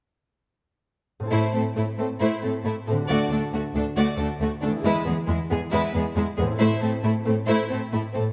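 A moderate concert-hall reverb gives this short cinematic cut from a longer piece a spacious bloom, with an up-front cello section anchoring the bass while the harp and violas sit in the background. The mood is adventurous and determined, moving at 136 BPM in a straight 4/4 in A dorian, and the harmony steps through Am, D and E before returning to Am. A mellow, ringing concert harp opens at 1.2 s with fingerpicked arpeggios, and the strings join at 1.3 s. A lush violin section carries the melody with vibrato, a soft attack and an expressive, smooth top, while a second, more focused violin line runs beneath it. Violas fill in the accompaniment with vibrato and portamento, and the cellos hold an even, bowed bass with light vibrato and a warm tone.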